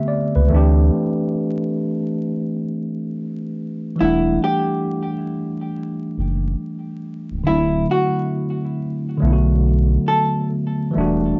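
A slow 69 BPM hip hop groove in 4/4 with a swung sixteenth feel sets a hazy, reflective E minor mood, where a worn, slightly out-of-tune tine electric piano runs through cassette tape and a low-pass filter over a deep, full sub bass with octave, and at 4.0 seconds a dark, hollow-body archtop guitar joins with a clean picked melody softened by tape echo, all wrapped in vinyl crackle and the muffled sound of a home cassette recording in a booth with moderate ambience.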